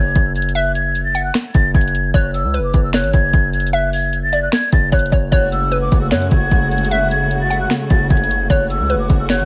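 A half-time trap groove at 151 BPM in F# minor opens this melancholic, menacing hip hop excerpt: the up-front trap kit enters at 0.2 seconds with a knocking kick, sharp snare, bright hi-hats and finger snaps, over a heavy, saturated 808-style bass. A breathy concert flute carries the melody high above with vibrato and delay, while a hollow, bouncy square-wave pluck adds a detuned second line through chorus and delay. At 5.3 seconds, as the harmony moves from F#sus2 to F#madd9, a lush bowed string section enters with sustained chords, all set in a bed of vinyl crackle.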